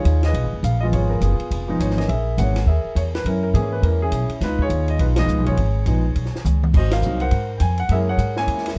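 A brisk 4/4 swing at 206 BPM drives this relaxed, sophisticated jazz piano trio in Db mixolydian, moving through ninth chords on Db, Gb and Ab in a short cut from a longer piece. A concert grand carries the melody with a warm, deep-bottomed tone sitting up front, while a woody, thumpy pizzicato upright bass on steel strings, also up front, anchors the low end. A compact cocktail kit of ride, hi-hat, crash, toms, a high-tuned snare and a punchy kick sounds dry and natural, with a drum fill at 6.5 seconds and full-band accents at 5.1 and 6.9 seconds, all in a dark production with little reverb.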